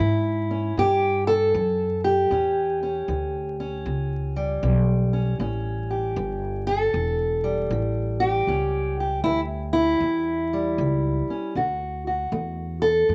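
A fingerpicked steel-string parlour guitar and a pizzicato upright bass start together, setting up a laid-back, rollicking acoustic country blues in a lazy swing. The guitar carries the melody up front with a dark, boxy tone, ranging from its low strings up through its middle register. The bass sits beneath it with a woody, warm pulse, also placed close to the listener. The harmony rests on an A7 chord for most of the passage before moving to D at 11.6 seconds. Recorded outdoors with little reverb and a layer of vinyl crackle, this short cut from a longer piece has a dry, intimate, old-time feel.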